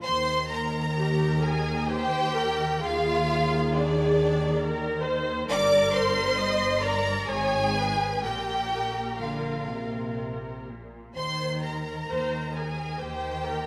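Set on a moderately reverberant scoring stage, this serene, tender slow romantic movement for string orchestra in Eb major sways in a rubato 3/4 at around 61-69 BPM, with a focused, up-front first violin section carrying the lush vibrato melody over a soft-attacked, distant second violin line, a smooth, even viola accompaniment entering at 1.0 s, a rich bowed cello bass, and a clear, intense double bass section beneath, moving through Gmadd11 and Abmadd11 colours before settling back on Eb at 11.2 s in this excerpt cut from a longer piece.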